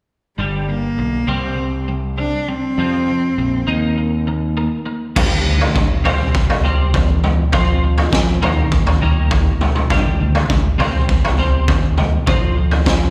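A rich bowed cello with vibrato opens this angsty, cathartic quiet-loud alternative rock piece, carrying its melody over bright, twangy chorused arpeggios from a twelve-string electric guitar and a growling overdriven fingered bass, then falls away at 4.3 seconds before a raw, gritty garage drum kit with a boomy kick and high-tuned snare crashes in up front at 5.2 seconds, all heard as a live gig through the venue's PA in recital hall reverb.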